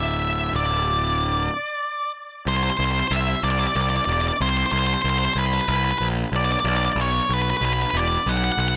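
Post-rock in 6/8 at 62 BPM counted in dotted quarters, this brief, hopeful and euphoric excerpt cut from a longer piece runs under nine seconds. An octave-fuzz lead guitar carries the melody between B4 and F#5, its dark, distorted tone picked up front and thickened by slapback echo and digital delay. Beneath it, a picked electric bass with overdrive holds the low end from D1 to C2, sounding direct and amped with a fuzzy edge. Both parts play from 0.0 to 8.8 seconds. The harmony opens on Dsus2, a stop falls from 1.5 to 2.5 seconds, and the music then moves into its second section, which settles on D5 at 6.3 seconds. Light reverb frames the two close, forward instruments.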